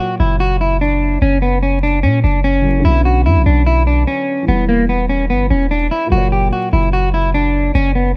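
A half-time trap groove at 147 BPM in 4/4 carries this melancholic, dark hip hop excerpt, with a long, sine-like 808-style bass entering at 0.2 seconds, its fast attack and decaying tail sitting up front. An electric guitar at the edge of break-up, slightly gritty and fingered, leads the melody close in the mix, while a boxy concert grand piano with deep low end plays accompaniment in the background over a progression moving from F# through Bmadd9 and Em back to F#. The echo-heavy mix adds a small-room ambience and vinyl crackle, giving the brief clip a dusty, brooding atmosphere.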